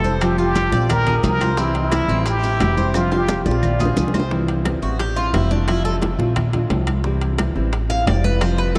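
Sunny and danceable, this brisk Cuban son and guajira clip in C major at 176 BPM opens with a breathy, plunger-muted trumpet singing a wah-wah melody with vibrato over fingerpicked nylon-string guitar, metallic double-stringed tres arpeggios and a thumpy, woody upright bass up front, with ringing congas and timbales, tight high bongos, woody claves and grainy vintage maracas behind, a drum fill from 2.9 s, and the trumpet dropping out as the tres takes a solo at 4.3 s, the whole set inside a vast, echoing cathedral reverb.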